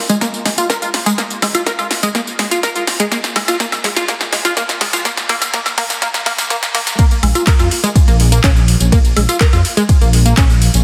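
A straight 4/4 pulse at 124 BPM drives this bittersweet progressive house excerpt in Bb minor, where an overdriven electronic kick and a deep house kit with a punchy snare, metallic hi-hats, handclaps, ride, tambourine and woodblock play a drum fill through the build-up beneath a tight sawtooth-and-square synth arpeggio treated with chorus, phaser, dub echo and sidechain pumping, until the drop at 7.0 s, when a dark, rumbling, detuned saw bass enters at 7.2 s and pumps up front in a dense, heavily limited mix with a moderate room reverb.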